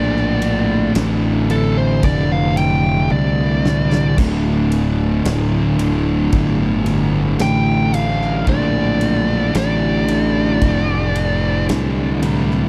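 A dark, compressed fuzz lead guitar solo with tape echo opens this sludgy, hypnotic stoner and doom metal excerpt, set over two picked fuzz rhythm guitars in the background (one thick, one warm) grinding out a low riff, a bright, growly, punchy overdriven fingered bass up front, and a very quiet, piping tonewheel organ holding clean sustained chords with key click and rotary speaker, while a big acoustic rock kit with bright cymbals, a medium-tuned snare and a punchy kick joins at 0.2 s and plays a fill at 3.1 s, all captured in a dry, close 1970s-style studio sound.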